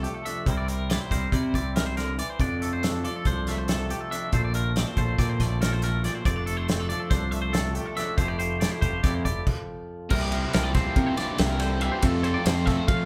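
A live, lightly reverberant room sound frames this wistful, sunny math rock and midwest emo excerpt in F major, moving in 9/8 at 280 BPM in eighths. A clean, picked electric guitar comps while a second twangy, fingered guitar with tremolo spins arpeggios above it, over a crisp picked bass and a loose, up-front acoustic kit with a tight kick and a pumping small-room sound, as the chords drift from C7 through F6, Bbmaj9 and Fmaj9. After a stop at 9.5 seconds, a double-tracked, overdriven guitar riff enters at 10.1 seconds over C7sus4 resolving to F.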